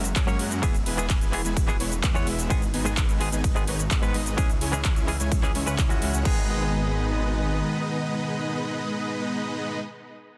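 Festival progressive house at 128 BPM in G# minor, this anthemic, emotional excerpt opens mid-drop with a huge, detuned supersaw riff pumping against the sidechain and trailing dub echo, over a thick chorused saw bass, a very quiet airy pad holding sustained chords, and a bright, twangy clean electric guitar with tremolo entering at 0.3 seconds. A punchy, up-front electronic kick and an overdriven big-room kit of metallic hats, ride, crash, handclaps and shaker drive the drop through F#add9, E, G#m and C#m until both drop out at 6.3 seconds. The bass follows at 7.6 seconds, leaving the riff, guitar and pad on G#m in a dense, heavily limited master with digital ambience.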